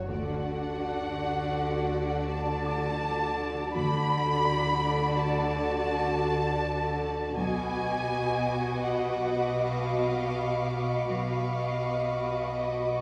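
Moving in a straight 5/4 at 82 BPM, this uneasy, tense fragment of a suspense film score sets a high violin section melody and lush violin texture above a second violin line, with a focused cello section and a smooth double bass section anchoring the low end as the harmony shifts from D to B at 7.4 seconds. An ominous, rumbling drone with its own reverb and phaser darkens the bottom throughout. A very quiet felt-muted upright piano adds mellow, vintage colour until 7.4 seconds, all placed in a wet scoring-stage reverb that sounds heard from further back in the room.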